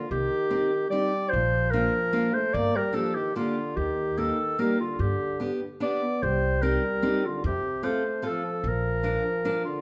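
Alpine folk in a jolly, bouncy waltz time, this short cut from a longer piece has a mellow clarinet carrying the melody up front, a vibrato-laden euphonium singing a second line beneath it, and a fingerpicked steel-string acoustic guitar filling in the accompaniment from 0.5 seconds. A woody, growly pizzicato upright bass thumps out the low end, also placed up front. The ensemble sits in a moderate recital-hall reverb, which gives the clarinet a distant, roomy quality and lends the whole dance-band sound a classical polish.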